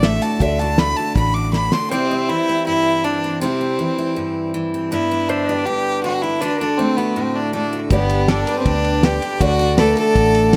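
A lightly reverberant, excerpted honky-tonk and classic country tune at 160 BPM in a heartfelt, easygoing mood, led by a biting, up-front fiddle with an airy bow over a jumbo steel-string acoustic guitar and a clean pedal steel guitar, while a boxy upright piano, reedy violin section, round foam-muted bass and cloth-damped drum kit with a fat snare play at the start, drop out during a drum fill that begins at 1.5 seconds, and return at 7.9 seconds.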